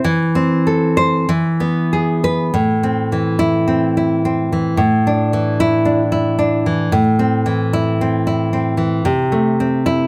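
A fingerpicked nylon-string guitar opens alone on an A minor chord over E, its tone bright yet full-bodied, in this short excerpt from a longer romantic piece for solo classical guitar. The mood is intimate and wistful, moving in a slow, rubato 2/4 at roughly 46 to 58 BPM, with the line ranging from A2 up to C5. Around 1.3 seconds the harmony turns to E, and at 2.5 seconds a new passage begins, settling back on A minor, drifting to Asus4, returning to A minor and closing on A minor over C near 9.0 seconds. The guitar sits up front with a deep classical character, and close, detailed microphones catch the finger squeak along the strings. A light reverb surrounds the instrument, keeping the sound close and personal.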